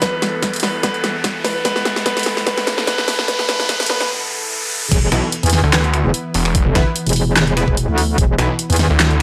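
A half-time, lightly swung 147 BPM groove drives this chaotic, aggressive heavy wobble dubstep fragment, where a clear grand piano melody with delay, a morphing wavetable pad, an electronic riser and an overdriven kit with a huge snare and bright hats build through a drum fill and brief break until the drop at 4.9 seconds unleashes a metallic wobble bass, a snarling distorted saw bass and an airy supersaw stab in the background.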